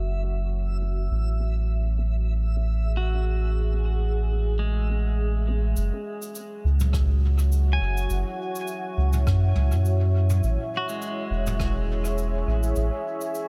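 A lightly swung 4/4 pulse at 103 BPM carries this deep, spacious ambient dub fragment in F# minor, opening on a dark, detuned sawtooth pad, a round, soft sub bass up front, a reversed granular swell and a muted, very quiet filtered chord stab, moving from F#m7 to Amaj7 while a filter sweep runs through the opening. A bright, twangy pedal steel guitar with slide, volume swells and dub echo arrives at 3.0 seconds, and at 5.8 seconds a natural small-room brush kit with cabasa, rim clicks and low-passed toms enters as the harmony settles on F#5. A tape-warm electronic kick sits in the background from 6.9 seconds before the chords return to Amaj7.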